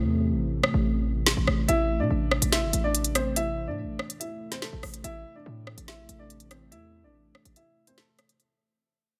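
Ominous and menacing, this short drill cut from a longer hip hop piece moves at 143 BPM with a half-time feel in A minor. A detuned, chorused analog pad holds deep sustained chords alongside a punchy, heavy 808-style bass from the start, and the drill kit's crisp hats, rim click and woody snare arrive at 0.6 seconds. A mellow upright piano with audible action noise and short sustain carries the melody from 1.7 seconds, all set in light digital ambience.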